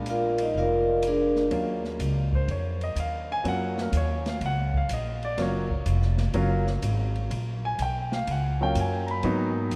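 Smoky and cool, this short cut from a longer small-group swing and bop piece moves at 124 BPM in 4/4 with swung eighth notes, set in Eb minor. An up-front vibraphone, struck with medium mallets and its motor off, rings out a brief metallic melody between 0.1 and 1.4 seconds before falling silent. Beneath it, a polished, present grand piano comps throughout, while a woody pizzicato upright bass with steel strings sits close and full in the low register. A dark, smooth drum kit carries hi-hat, ride, snare and a boomy kick, its cymbals dark and its top end rolled off, placed well back under the other players. The harmony moves from Bb7 to Ebm7 at 1.5 seconds and reaches Abm7 near the end, all bathed in a vast cathedral reverb that gives the group a long, echoing tail.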